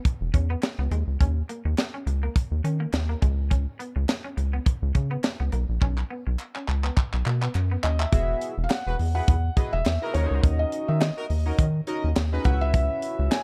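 A swung 104 BPM boogie-funk groove in 4/4 sets a danceable, late-night mood, with a tight, up-front drum kit and its high-tuned snare, a rubbery, bouncy square bass, crisp background handclaps and a twangy, slightly broken-up chorus guitar riff carrying the opening until a drum fill hands over at 8.1 seconds to a second section where a felt-muted upright piano melody with tape echo and audible action noise, a glossy phased polysynth and a smooth-topped horn section bring richer chords, all within a dark, warm small-room production in this excerpt.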